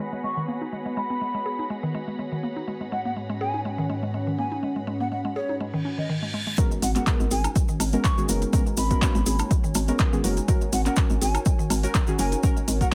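Deep house at 123 BPM in G# minor with a moody, gently swung feel: a warbling, nostalgic tape-like pad and a woody, nasal mallet-like synth pluck arpeggio move through filter sweeps over G#m11 and F#/G# chords, while a dark, bowed string section and a silky string machine hum behind them until 6.1 seconds, and a mellow, airy jazz flute with vibrato carries the melody. A reverse cymbal from 5.8 seconds leads into an electronic impact and the drop at 6.6 seconds, where a punchy, overdriven kick, a deep house kit of handclaps, hi-hat and woodblock, a grainy cabasa and soft, full-bodied chord stabs arrive, with a bouncy, knocking FM bass joining moments later. The pad, pluck, stabs and bass pump against the kick, and the pluck, stabs and flute trail delay, all under a light reverb and low-pass filter.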